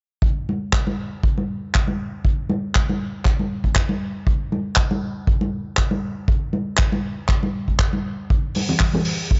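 Sleek and sensual, this short nu-disco excerpt moves at 119 BPM in 4/4 with a light swing on the sixteenths, carried entirely by percussion. A punchy acoustic kick sits up front with a pumping small-room character and a rolled-off top, joined at 0.5 seconds by bright, vintage-toned congas played with soft hands and, from 0.7 seconds, a warm vintage kit of handclaps and hi-hat. The sound is dry and close, with a muted top end that keeps the groove intimate.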